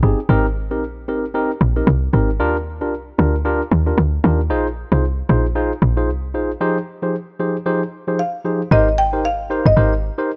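Studio reverb surrounds this sultry, hypnotic afrobeats excerpt at 114 BPM with a swung sixteenth feel, where a clean, direct tine electric piano moves through Abmaj7, Ebmaj7, Bb7sus4 and Fm7 over a punchy, woody log drum bass with a fast attack, FM tone and noise layer, and after a break from 6.6 seconds, a dark, smooth marimba with padauk bars and medium mallets enters at 8.2 seconds to carry the melody through digital delay as the harmony returns to Abmaj7.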